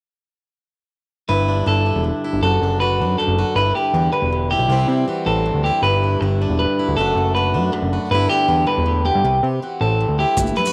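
Highlife guitar band in a carefree 12/8, where a boxy, picked swing-style acoustic guitar accompanies over G6, D/F# and C chords while a bright, twangy clean electric guitar plays arpeggios with spring reverb and tape echo, a fat, detuned analog bass sits up front, and at 10.4 s a dark, gritty breakbeat drum kit with hi-hat and kick arrives alongside high-tuned, distant congas and grainy maracas just before this cut-off fragment of a longer piece ends.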